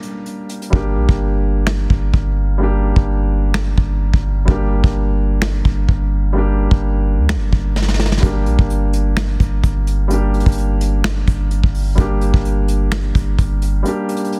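The recording has a dense, heavily limited modern sound set in a small room, with the drums and bass placed up front. This brooding, melancholic hip hop and trap excerpt moves at 128 BPM in 4/4 with a half-time feel, resting on G minor throughout. A dark concert grand piano plays accompaniment between G3 and G4, its mellow, boxy tone and long sustain softened by a low-pass filter and sitting beneath the other parts. A soft brush drum kit with finger snaps, hi-hat, a punchy kick and a medium-tuned snare carries a smooth acoustic character, with soft clipping on the snare. A boomy 808-style bass with a sine body, a noise layer, a fast attack and a decaying tone enters at 0.7 seconds, when the hi-hats drop out. The hi-hats return at 8.2 seconds after a short drum fill, and the kick falls away in the final half-second of the clip.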